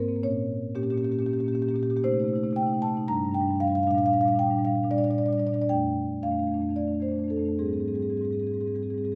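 A moderate recital-hall reverb, lasting about 1.7 seconds, surrounds a close, up-front solo marimba in this brief, 9.2-second passage cut from a longer contemporary classical piece. Played with soft mallets on rosewood bars, the instrument sounds woody, round and mellow, ranging from F2 up to Bb5. The music moves in 7/8 at 228 BPM counted in eighths, its uneven beats stretched and pulled by a free, rubato feel that gives it a reflective, hypnotic mood. The harmony drifts through Bbm6, Cm6, G5, Bb6 and F69 before settling on Abmaj7 at 7.6 seconds.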